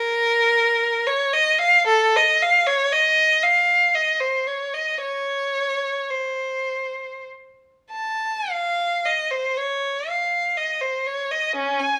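A rich, focused violin sings alone, up front in light reverb yet distant, its vibrato coloring a meditative, yearning classical line that moves in free, expressive rubato across this twelve-second passage cut from a longer piece.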